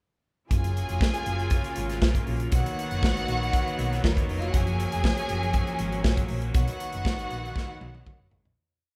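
Danceable and joyful, this short disco piece rides a straight four-on-the-floor groove from 0.5 seconds, with an up-front acoustic drum kit pairing a tight kick and medium-tuned snare with sixteenth-note hats, while a dark, round hollow-body electric bass plays a syncopated disco line. A lush, vibrato-rich violin section carries the second line with fast runs into held notes, over a clear, earthy string section holding distant sustained chords as the harmony moves between F#maj7 and Bmaj7. The band plays live in one room with light reverb, and the piece fades out from 6.6 seconds as a drum fill starting at 7.6 seconds closes it.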